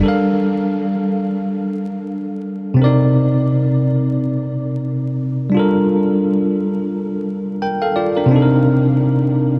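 This hip hop fragment, cut from a longer piece, sits at 87 BPM in 4/4 with a swung sixteenth-note feel and a melancholic, nostalgic mood in G minor. A bell-like tine electric piano carries the whole passage as accompaniment, playing from the start through 9.6 seconds across a span from C3 to G5. Its tone is bright and clean, placed up front in the mix, yet colored by cassette tape character and a low-pass filter. The harmony rocks between Gm9 and Cm9, returning to Gm9 at 5.5 seconds before moving back to Cm9. A huge ambient reverb with a long tail soaks the dreamy mix, while vinyl crackle adds an aged, hazy surface.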